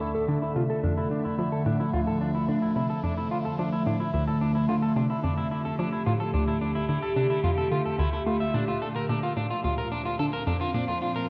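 A steady, straight 4/4 pulse underlies this expansive, cosmic ambient fragment, cut from a longer piece. An evolving wavetable pad sits up front with sustained chords, its sine-based tone morphing through phaser and its own built-in reverb, bright with a slow attack and long release. An electric guitar at the edge of break-up plays picked arpeggios in the upper register, slightly gritty yet mellowed by a low-pass filter and delay, with a filter sweep running across its whole span. Beneath them, a hollow square pluck enters at 0.3 s with a bouncy, detuned low riff, its fast attack and short decay softened by chorus, phaser and delay. The harmony rests on Dmadd9 before shifting to Bbmaj7 at 8.5 s, all set in a wet concert hall and coloured by worn, warbling cassette tape with drifting pitch.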